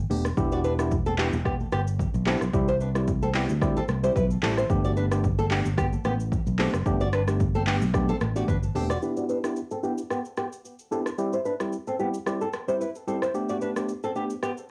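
Joyful and breezy, this afrobeats excerpt rides a lightly swung groove in 4/4. A fingerpicked flamenco guitar carries the riff up front, its bright acoustic tone complete with finger squeak and coloured by a low-pass filter, cassette tape grain and tape echo. Beneath it, a worn, slightly out-of-tune tine electric piano plays chords through built-in speakers, also filtered and taped, cycling through Em7, C and Gadd9. A warm fingered electric bass sits up front, direct and amped, alongside a layered deep house drum kit with a punchy kick, smooth hats, handclaps, rim click and shaker, while very quiet, damped, high-tuned congas add a dry, close touch. At 9.0 seconds the bass and congas fall away and a filter sweep runs to the end as the same chord cycle returns. The whole piece carries the hazy character of a home cassette recording with light reverb and a hint of studio ambience.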